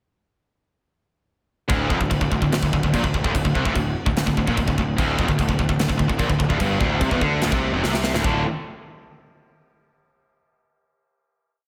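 A straight 4/4 metal half groove drives this short, relentless and aggressive heavy metal piece, with the band crashing in at 1.7 seconds. The acoustic kit sits up front, pairing bright cymbals and a medium-tuned snare with a tight kick, its polished, airy tone filling a big room. A high-gain electric guitar, also up front, picks a single-note riff through distortion and a slapback echo, while a second distorted guitar picks a single-note riff further back. Underneath, a growly, fuzz-soaked picked electric bass drives eighth notes that double the guitar riff. A drum fill at 7.8 seconds leads to a final chord at 8.3 seconds, heard in a big arena sound with a lush hall reverb and a touch of small room ambience.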